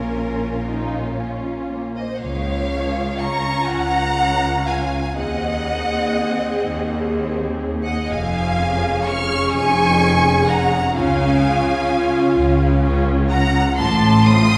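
Moving in an unhurried 6/8 at 42 BPM with uneven, rubato beats, this elegiac, yearning romantic movement for string orchestra in Db major, cut from a longer piece, carries a rich, focused violin melody above a second violin line that sits soft-edged and close up front, while smooth, even violas, clear cellos and expressive double basses fill out the harmony beneath, every section bowed with vibrato and heard from further back in a concert hall's wet reverb.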